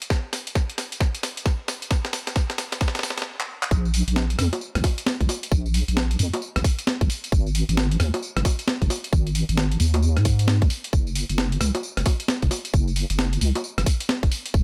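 UK garage two-step with a late-night, skippy mood at 133 BPM in Bb minor, where a gritty, tape-warm breakbeat kit of bongos, handclaps, hi-hat, rim click, snare and tambourine builds up with fills over a tight, layered electronic kick before a brief stop at 3.3 seconds, and a deep, dark, chorused wobble bass enters on the drop at 3.7 seconds, all held close and dry in this cut from a longer piece.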